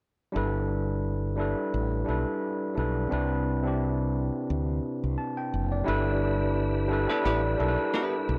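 R&B with a neo-soul lean, this relaxed, smooth piece sits at 87 BPM in 4/4 with a lightly swung sixteenth-note feel in G major, tuned to A4 = 435 Hz, and is cut from a longer piece. From 0.3 seconds an overdriven tine electric piano carries the accompaniment up front, its tone bright, barky and gritty through a combo amp, while a mellow fretless electric bass sits alongside with a dark, round, punchy sound. The harmony moves from G6 to Cmaj9 and back to G6. At 5.9 seconds a tonewheel organ enters quietly with sustained chords, its smooth tone shaped by a fast rotary speaker and chorus vibrato. At 7.1 seconds a vintage hollow-body jazz guitar adds a brief picked, compressed second line in a clean tone. The dry, close recording has a 1970s studio character with little reverb.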